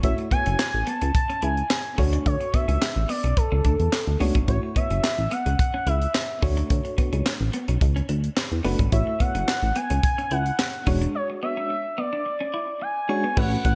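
Lightly reverberant, this smooth, danceable early-eighties boogie funk excerpt rides a glossy chorused synth bass and a tight, dry funk drum kit with bright cymbals and handclaps, under a gliding, warbling portamento lead with vibrato and slapback echo, while a tremolo-laden FM electric piano and a clean, picked electric guitar fill the middle over A6 and Dmaj7 changes, a break arrives at 11.1 seconds, and a clear horn section slips in briefly at 13.4 seconds.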